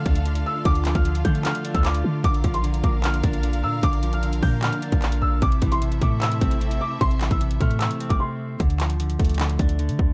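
A dry, dark mix opens this hard-hitting, melancholic half-time trap excerpt in D minor at 151 BPM, where a mellow, boxy grand piano plays a high delayed melody over clean, fingered electric guitar and rich, biting bowed strings with light vibrato, while a deep, boomy sine 808 bass and an up-front trap kit of hard-clipped kick, metallic hi-hats and handclaps drive through a Dm, Bb and Am progression until piano and strings drop out at 8.6 seconds, leaving guitar, bass and drums to return to Dm.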